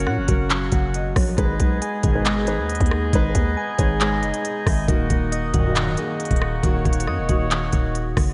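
Soaked in a lush hall reverb with a dreamy, dark-edged top end, this melancholic yet hard-hitting trap excerpt moves at 137 BPM in a half-time feel in G# minor, drifting from F# to G#m and then D#m. An up-front electronic kit with a knocking kick, crisp hats, handclaps and rim clicks drives it alongside a growling, buzzy 808-style bass, while soft, round electric-piano-like synth keys spin chorused, delayed arpeggios over a tight woodwind section holding sustained chords. A dark, boxy concert grand piano adds accompaniment and fills from 0.5 to 1.4 seconds and 3.6 to 4.9 seconds, and detuned, brassy synth stabs with chorus and phaser sit in the background around 2.0 and 5.5 seconds.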